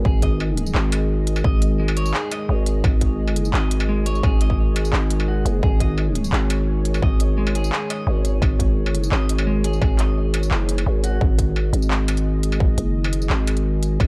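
A growling, buzzy 808-style bass sits up front from the first moment, its fast attack and decaying sine tone anchoring this heavy, dark half-time drum and bass cut from a longer piece at 172 BPM. Alongside it, a deep, moody analog pad holds sustained chords built from detuned sawtooth and triangle tones with a sub octave, its slow attack and long release softened by chorus, roughened with vintage 12-bit sampler grit and pumping against the sidechain. A distorted electronic kick with a tape-warm edge drives the beat. An industrial drum kit of handclaps, smooth hats, struck metal and tambourine adds texture, both kits set in studio ambience. A clean, picked electric guitar plays arpeggios soaked in spring reverb and dub echo until it drops out at 11.2 seconds, leaving the bass, pad and drums to carry the drop to the end at 14.1 seconds. The overall production is dark and warm, wrapped in a digital ambience.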